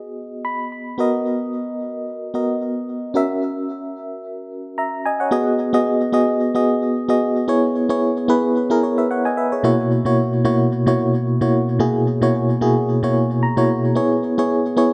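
A solo FM electric piano opens with a short fill at 0.2 seconds, its fast attack and decaying notes carrying a noise layer and a tremolo. This romantic, nostalgic pop piece moves at 111 BPM in 4/4 with a light swing on the sixteenths, tuned slightly sharp to A4 = 441 Hz. The mellow, up-front electric piano spans B2 to B5 and is treated with delay, sitting in a wet recital-hall reverb that gives the dark production a soft, spacious glow. The harmony drifts from G#m7/B through Bmaj7 and F#7, then a second passage from 5.3 seconds adds C#m7/B and F#7/B. Another fill at 13.2 seconds leads to a closing C#m7 at 14.0 seconds, in this short passage cut from a longer piece.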